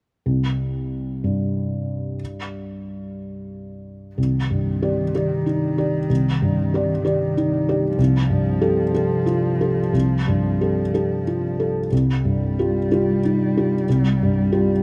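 Neoclassical piano and strings, reflective and longing, this excerpt from a longer piece drifts in a rubato 6/8, with a felt-muted upright piano up front, mellow and intimate with audible action noise, playing alone from 0.3 seconds until a dark, close cello enters at 4.2 seconds as a soft, airy sul tasto second line with light vibrato, set in a light reverb.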